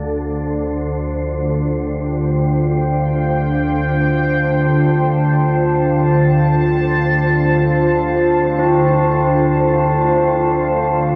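Drenched in a huge, cavernous reverb, this desolate dark ambient drone excerpt unfolds in free time over an F/D chord, with a bright, resonant sawtooth pad sustaining up front beside a calm, detuned organ-like drone under a continuous filter sweep, while a breathy, wind-like tuned noise texture hovers high above and soft, metallic tubular bells enter at 8.6 s with solemn arpeggios trailing tape echo.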